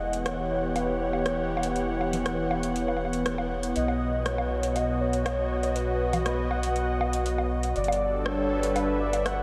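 A straight 4/4 pulse comes from a booming analog drum machine that enters at 0.1 s with bongos, congas, metallic hi-hats and a rim click, its tape-tinged hits trailed by analog delay. This melancholic, glitchy IDM fragment, cut from a longer piece, rests on a round, deep bass built from square, sine and triangle waves with a wave-folded edge, sitting dark and low beneath the harmony. A smooth, detuned sawtooth pad sits up front with slow-attack sustained chords and chorus, moving through Em6, B and G6. Over it, a velvety unison lead carries the melody with vibrato, chorus, cassette tape coloring and analog delay. The mix is soaked in a huge, wet ambient reverb with an 8.1 s tail, giving the whole passage a dreamy haze.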